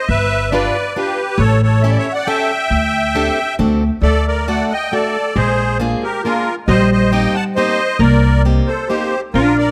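A reedy, shimmering musette accordion carries the melody up front, its musette tuning lending a bittersweet, nostalgic glow to this musette waltz excerpt, cut from a longer piece, at 136 BPM in 3/4 with a light swing on the eighth notes. An upright bass, woody and thumpy with steel strings, sits equally close from 0.1 seconds, plucked pizzicato and providing the low foundation. A picked, plugged-in swing-style acoustic guitar adds bright, boxy accompaniment, while a dark, clean hollow-body archtop guitar, miked and amplified, enters at 4.0 seconds with a second line in a lower register. The accordion carries an analog delay, and the harmony moves through seventh chords such as G7, A7 and D7 before settling on D, then drifts toward Bb7, Eb6/Bb and Cm7. Close, detailed microphones and light reverb keep the sound intimate.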